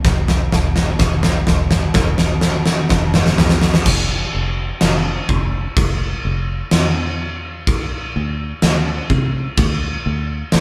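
In a straight four-four pulse, this cathartic, cinematic post-rock fragment opens with a drum-fill build-up over its first 3.9 seconds, where a huge arena kit with a punchy kick, fat snare, toms and crash sits up front in a big-room sound, then settles into a new section as a dark, round, foam-muted fingered electric bass continues underneath, all captured live in one room with light reverb.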